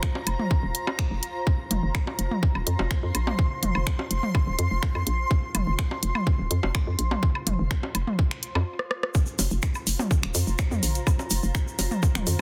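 This hypnotic, quirky minimal techno excerpt opens on a tight, tape-toned electronic kick sitting up front at 125 BPM in a straight 4/4, joined by a garage drum kit of finger snaps, rim clicks and warm hi-hats, with gentle soft clipping on the snare. A granular cloud pad hovers beneath, blurred and full-bodied with a slow attack and long release, its built-in reverb and sidechain pumping giving it an evolving, breathing quality around an Fsus4 chord. Electronic bongos, woodblock and toms scatter through the groove, while a hollow, knocking FM bass bounces up front with punchy, fast-attack, decaying notes that also pump with sidechain. A brief stop and drum fill just before 9.1 seconds leads into the drop, where a grainy, bright acoustic tube shaker enters in the background. The mix is dry, dense and heavily limited in a modern style.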